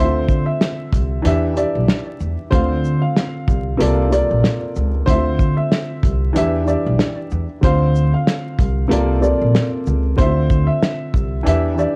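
A cloth-damped, thuddy drum kit sits up front in this gritty boom-bap hip-hop excerpt, its tight kick, medium-tuned snare, hi-hat and shaker entering at 0.3 seconds with a rolled-off top, a small-room feel and cassette tape grit. Beneath it, a woody pizzicato upright bass with steel strings adds dark, tube-saturated weight until 11.8 seconds. A mellow baby grand piano carries the accompaniment close and intimate, its short sustain and audible action noise colored by tape. Over this, an upright piano plays a smooth, vintage-toned melody between C5 and F5, passed through cassette tape and analog delay. Swung sixteenths and a cycling progression of Dm9, Em7, Dm7 and C13sus4 give the groove a tough mood, set in light reverb with vinyl crackle and the character of a home cassette recording.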